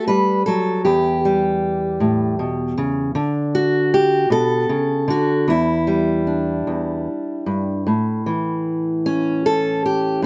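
A single fingerpicked steel-string acoustic guitar sits up front in a light reverb, its tone warm. This is a short folk fragment of just over 10 seconds, lifted from a longer piece, with a reflective, melancholic mood. The playing moves freely in 6/8 at 51 BPM counted in dotted quarters, with a rubato feel that lets the phrases breathe unhurriedly in E dorian. The guitar spans from a low E2 up to B4, touching F#m before settling on Em, then passing through D and Em7. At 7.9 seconds the music turns to a new passage resting on A, lending the close an unresolved, wistful air.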